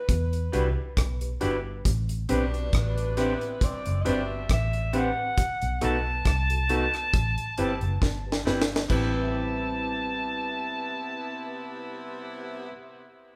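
A breathy, distant alto saxophone with light vibrato carries the melody over a smooth, bittersweet lovers rock groove at 68 BPM in A dorian, in an excerpt cut from a longer piece. Dark, round, foam-muted fingered bass and a dry reggae kit with a high-tuned snare and tight kick sit up front, while a worn, slightly out-of-tune tine electric piano accompanies and a twangy, slightly broken-up guitar through a small old amp plays stabs; a horn section with a smooth top and tape echo joins at 2.3 seconds as a second line. The drums play a fill from 8.0 seconds and stop at 9.1 seconds, and the rest of the band carries on in a large studio reverb as the chords move through Em7, Am11, B7 and Am9.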